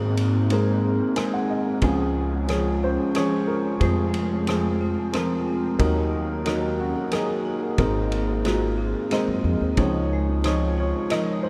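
A slightly detuned upright piano, up front and woody with audible action noise and a touch of chorus and tape echo, carries the melody from the start, alongside metallic, ringing vibraphone arpeggios struck with hard mallets and a pizzicato upright bass; a loose, distant drum kit of tight kick, dark ride cymbal and rim click joins at 0.2 seconds. This hopeful, intimate acoustic folk-pop ballad in 3/4 time opens on an Abadd9 chord, and the piano adds a fill from 0.8 to 1.8 seconds before the next section begins on Db. The dreamy mix is soaked in a huge ambient reverb throughout this excerpt from a longer piece.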